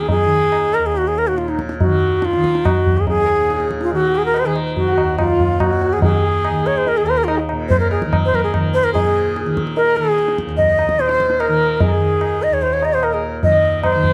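Hindustani classical music in raga Bhimpalasi on Eb, introspective and longing, moving in 7/4 at 144 BPM and speeding up throughout, with an airy, reedy bansuri carrying the melody up front with vibrato over a buzzing, shimmering tanpura drone and high-tuned, ringing tabla, while a bowed sarangi enters at 3.2 seconds with a gliding, boxy second line rich in sympathetic strings, captured in a dry, close 1970s-style studio sound with small-room ambience.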